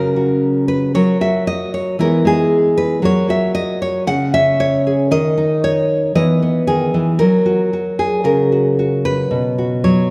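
Folk for solo nylon-string guitar, fingerpicked at 115 BPM in a straight 4/4, with a gentle, nostalgic mood across this short passage cut from a longer piece. The guitar sits up front with a deep classical tone, ranging from B2 up to F#5 as it plays alone from 0.0 to 10.1 seconds. The harmony moves from F# through E, back to F#, then to C#m, with a brief chord-free stretch before Emaj7 and a return to F#. At 9.3 seconds the passage closes on a B5 chord. A long, wet reverb of 2.1 seconds, like that of a church or concert hall, surrounds the acoustic playing and lets each chord ring into the space.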